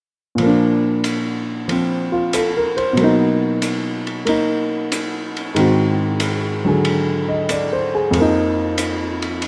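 A rough home-demo mix with light reverb frames this short, relaxed cut of swinging jazz, where an up-front grand piano carries the melody in a clear, intimate tone, its action noise audible as it ranges from F2 to Eb5. Behind it, an acoustic drum kit in a small room keeps time on hi-hat and ride, its dark, smooth cymbals sitting well back with a rolled-off top. Both play from 0.4 to 9.5 seconds over a progression that moves from Bb through Bmaj7 and Ab7 to an F7sus4.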